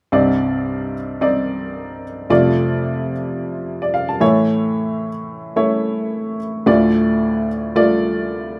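A rough home-demo sound with a wet, short studio ambience frames this uplifting, hopeful pop passage, cut from a longer piece, at 110 BPM in 4/4 with a light sixteenth-note swing. A single upright piano plays accompaniment from 0.1 to 8.6 seconds, sitting up front with a woody, intimate tone, short sustain and audible action noise. It spans C2 to A5 as the harmony moves from Cmadd9 to F6, then A and Dm, giving the brief passage a hopeful lift.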